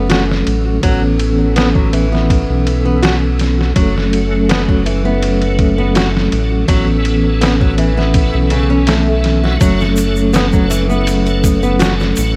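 A piping, scooped tonewheel organ sits up front with key click, chorus vibrato, slow rotary speaker, harmonic tremolo, tape echo and a filter sweep through this brooding, cinematic trip hop excerpt at 82 BPM in F# minor, moving between F#m and Aadd9 over fingerpicked flamenco guitar arpeggios with fresh strings, softened by low-pass filtering and tape echo, a round, deep analog bass, a compressed, pitched-down, muffled sampler-style kit with a thumpy kick, medium-tuned snare and ride in studio reverb, all under a bed of vinyl crackle, with a bright egg shaker slipping into the background at 9.6 seconds.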